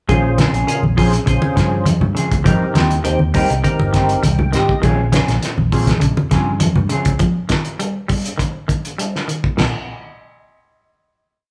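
Afrobeat with a hypnotic, funky feel, this short piece moves at 101 BPM in a straight 4/4 in Bb dorian, cycling through Bbm9, a rootless Abmaj7 and Eb. A cloth-damped drum kit sits up front with a muffled, gritty, lo-fi character, a fat snare, a tight kick and dark cymbals, while low-tuned, ringing congas play in the background. The fingered bass plays a punchy, syncopated riff, and a percussive tonewheel organ adds syncopated, rootless chord stabs with key click, chorus vibrato and a slow rotary speaker before finishing with a fill that ends at 4.8 seconds. Two clean electric guitars fill out the harmony: a bright, hollow-bodied semi-hollow plays a picked arpeggio ostinato in the background, while a dark, fingered guitar strums upper chord shapes through a phaser. The bass drops out at 7.2 seconds, and the band rings into a final note from 9.6 seconds, all captured live in one room with a moderate large studio reverb.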